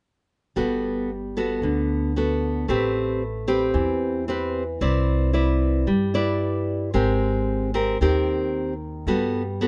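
At 0.6 s a fingerpicked classical nylon-string guitar and a pizzicato upright bass begin together, setting up a relaxed, sophisticated bossa nova in G major at 113 BPM with a straight 4/4 feel. The up-front guitar has a warm, fresh-stringed tone with audible finger squeak, voicing rich chords that move from Gmaj9 through Am9 and Cmaj9 to a colorful Abmaj9 before settling back on Gmaj9 at 9.1 s. Beneath it, the bass sounds woody and dark, and the dry, close sound of this short cut from a longer piece keeps both instruments intimate until they stop at 9.7 s.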